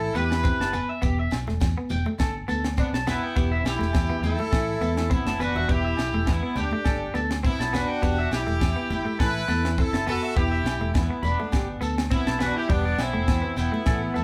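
Bittersweet and warm, this highlife guitar band groove puts a punchy, up-front horn section on the melody, with a very quiet, smooth-topped solo trumpet carrying a second line beneath it. A round, dark fingered bass and a clean, compressed semi-hollow guitar hold down the accompaniment, while a twangy, slightly broken-up electric guitar spins picked arpeggios above. A dry, polished funk kit with a high-tuned snare drives the band and adds a fill at 5.0 seconds, framed by ringing congas, background agogo bells and a grainy, distant shekere, all caught live in one room with moderate studio reverb.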